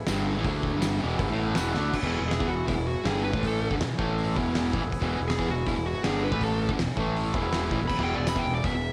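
A gritty home cassette recording in a small room with light reverb, this short cut from a longer garage rock track has a swaggering, rowdy feel in a straight four. An oversized, low-tuned acoustic kit sits up front with a boomy kick, fat snare and dark cymbals, its saturated sound pumping in a bright stone room, and a drum fill lands at 1.8 seconds. A double-tracked, picked fuzz guitar drives the riff alongside a punchy, overdriven fingered bass that comes through direct and amped, while a buzzy vintage combo organ holds sustained chords through a phaser in the background and adds short fills. A close, jingly tambourine sits quietly in the background in the opening moments and returns briefly near the end. From about 2.3 seconds a dark, distorted fuzz lead guitar takes a solo that runs to the end, as the harmony rocks between E and A5.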